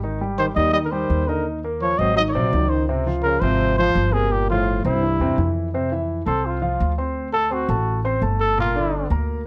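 A straight, brisk 4/4 swing-free pulse drives this sunny, danceable jazz cut from a longer piece, with a woody, thumpy pizzicato upright bass and a warm, long-sustaining grand piano comping up front through rich seventh-chord changes. A dark, breathy trumpet carries the melody with scooped notes and a plate-reverb sheen, joined by a mellow, vibrato-laden trombone on a close-miked second line until 5.5 seconds. From 5.7 seconds the trumpet takes a present, jazz-style solo over the rhythm section in a lightly reverberant room.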